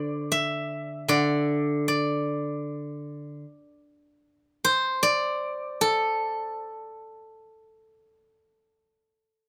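A steel-string zither played with fingerpicks sounds alone and up front from the start, its ringing, silvery acoustic tone spanning D3 to E5 in a longing, contemplative solo of traditional Chinese plucked-string music. The pulse sits around 75 BPM in 4/4 but flows freely in rubato, and the passage is a 9.5-second fragment cut from a longer piece. A moderate studio reverb surrounds the instrument in a rough home-demo mix.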